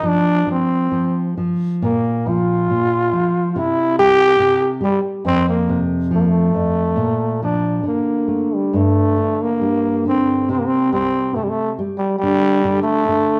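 Set in a stone room with a damp, lingering reverb and the feel of a band playing live together, this excerpt from a longer fado-style ballad moves at a rubato 69 BPM in 2/4, passionate and mournful. A close-miked, growling trombone carries the melody up front with a bright, raspy, gritty jazz tone, vibrato and scooped notes. A dark, thumb-plucked nylon-string guitar with fresh strings accompanies it in a deep classical manner, as the music turns from Bb major to G minor at 8.7 seconds.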